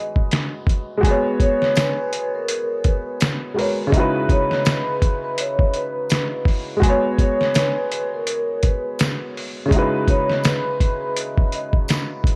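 A hazy, reflective lo-fi hip hop excerpt with a swung feel, where a woody, slightly detuned upright piano with audible action noise carries the G#m7 and C#m11 chords up front, a mellow vibraphone played with soft mallets sings the melody through a low-pass filter and tape echo, a muffled, overdriven sampler-style drum kit with a thumpy kick and fat snare sits up front from 0.2 seconds, and a jingly tambourine rings distantly in the background from 1.8 seconds.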